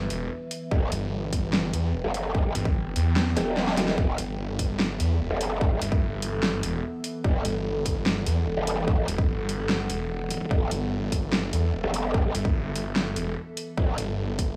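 Aggressive and menacing, this short cut from a longer heavy wobble dubstep track moves in a heavy half-time feel. A snarling distorted saw bass with a sawtooth, detuned unison tone and a moving notch runs through the whole 14.6 seconds, joined at 0.7 seconds by a wobbling growl bass whose formant filter, chorus and overdrive give it a saturated, guttural bite. The electronic kick also arrives at 0.7 seconds, punchy and up front, while the dubstep drum kit pairs a huge snare with metallic hats and drops a brief fill at 3.4 seconds. Above the low end, an evolving wavetable pad holds sustained chords with a slow attack and long release, its bright, morphing tone colored by phaser, built-in reverb and sidechain pumping. The drums carry a tape-tinged studio reverb, but the overall room stays small and close, keeping the heavy parts pressed forward.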